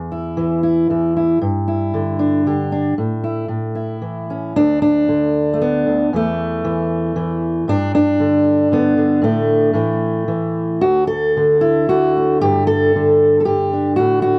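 Peaceful and hopeful, this short folk passage for solo fingerstyle acoustic guitar moves in a loose, rubato 3/4 around 116 BPM, with the fingerpicked steel-string guitar ranging from D2 to A4. Its fresh strings give a warm, auditorium-bodied tone that sits up front, and the harmony drifts through G5, A5 and A before opening into a second section at 4.6 seconds that touches G, Asus4, D and Gsus2. The sound is dry and close, like an intimate 1970s studio recording.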